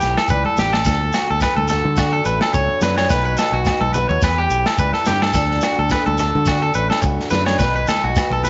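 An up-front, twangy electric guitar at the edge of break-up spins arpeggios with slapback echo across this sunny highlife guitar band clip, riding over a boxy, picked ladder-braced acoustic guitar, a punchy fingered electric bass, a gritty, saturated breakbeat kit with a tight kick and snare, a grainy shekere, ringing agogo bells in the background and very quiet, close congas, while the Em, D and B chords cycle in light studio reverb with a softened top end.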